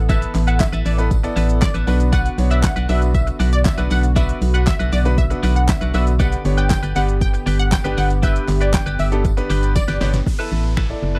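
A hollow, organ-like FM bass pumps up front through this bittersweet, confident dance-pop drop in B minor at 118 BPM, driven by a deep house drum kit of deep kick, fat snare, hi-hat, handclaps, finger snaps and shaker, with a very quiet jingly tambourine beneath. A lush, detuned unison pluck carries the melody with phaser and slapback echo, while a brilliant grand piano, a twangy clean twelve-string electric guitar riff and a smooth sawtooth pad in the background fill out the Asus2, Bm and G harmony. The dry, close 1970s-style sound stays tight until a drum fill at 9.8 seconds hands over to an electronic downlifter at 10.3 seconds as this cut from a longer piece ends.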